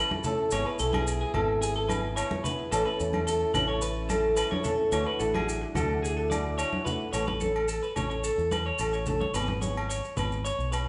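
Carefree and warm, this highlife guitar band groove in A major moves at 109 BPM in a straight 4/4, with a bright, twangy clean electric guitar up front spinning arpeggios over a round, punchy fingered electric bass. Behind them, a boxy fingerpicked old ladder-braced acoustic guitar and a vintage overdriven combo organ with light vibrato hold the background, the organ's sustained chords dropping out at 7.1 seconds as the second section begins. Soft-handed congas, grainy maracas and ringing agogo bells fill out the percussion, all captured as a band playing live in one room with a wet large studio reverb, in a short cut from a longer piece.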